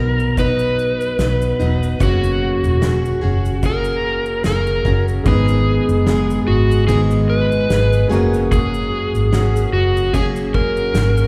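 A long, wet church reverb surrounds this sunny, easy-going acoustic pop passage, cut from a longer piece and moving at an unhurried 74 BPM in 4/4 with a light sixteenth-note swing. Up front, a bright, full-bodied steel-string acoustic guitar is picked through the chords, beginning on Bmaj7 and F#add9, while a dark, overdriven slide guitar carries the melody in a narrow upper-middle range. Underneath, a vintage foam-muted electric bass sits round and punchy in its lowest register, and a loose indie kit of kick, shaker and medium-tuned snare comes in at 0.2 seconds with a pumping small-room character. At 5.2 seconds a soft, felt-muted upright piano slips in far in the background, intimate and mellow with its action noise audible, just before the harmony turns to G#m at 5.3 seconds and later returns to F#add9.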